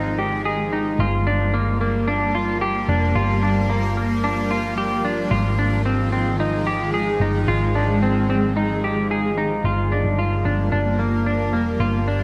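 Ethereal and haunting, this dream pop excerpt drifts at 111 BPM in a straight 4/4, cut from a longer piece and tuned slightly below standard pitch, to A4 = 437 Hz. A shimmering ambient pad holds sustained chords throughout, its detuned, granular texture carrying an octave-up shimmer, slow attack and long release, treated with chorus and its own reverb. Alongside it, a semi-hollow electric guitar plays clean, fingered, compressed arpeggios through analog chorus and tape echo, sitting up front with a warm hollow-body tone. A hollow-body short-scale electric bass, picked and amped, anchors the low end with a dark, round sound. The harmony moves between Fm7 and Gm7, shifting into a second section at 9.6 seconds, and a wet plate reverb soaks the whole mix in a dreamy haze.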